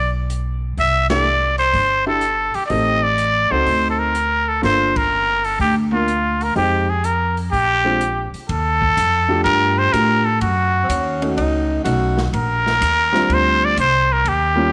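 A small, lightly reverberant room gives this smoky, moody swing-and-bop fragment an intimate air, with a nasal, raspy straight-muted trumpet up front carrying the melody over a woody pizzicato upright bass and a dark, rolled-off drum kit of hi-hat, ride, snare and boomy kick. A warm concert grand with audible action noise fills in the rich extended chords, band accents land at 1.0 and 4.9 seconds, and a growling, gritty tenor saxophone adds a brief second line from 10.8 seconds.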